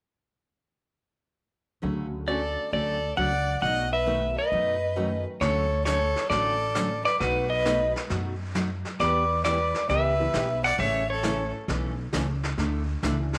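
Western swing country in D major at 134 BPM, cheerful and down-home, this excerpt sets a dark, clean lap steel melody played with slide, fingerpicks and volume swells over a clear fiddle line with light vibrato and slapback echo, both entering at 2.3 s, backed by a thumpy, woody upright bass, a full-bodied picked dreadnought acoustic guitar and a detuned, jangly honky-tonk piano in the background, while a vintage brush kit with a medium-tuned snare joins at 5.4 s, the whole band sitting in a moderate echo-chamber reverb with small-room ambience.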